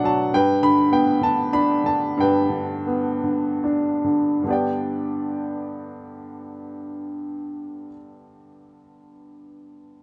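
A bright upright piano carries this short classical excerpt alone, its tone brilliant and woody, sitting up front in a natural-sounding small room with moderate reverb. The music is lyrical and hopeful, with a relaxed mood, set in G major and a 3/4 metre. The tempo moves freely in a rubato feel, ranging between 68 and 104 BPM, and it slows down from 0.3 to 4.5 seconds as the opening phrase rests on a G chord. A second section begins at 4.5 seconds and carries the line on to 9.6 seconds, with the piano spanning from G2 up to B5. Cut from a longer piece, the passage feels like an intimate, unhurried moment.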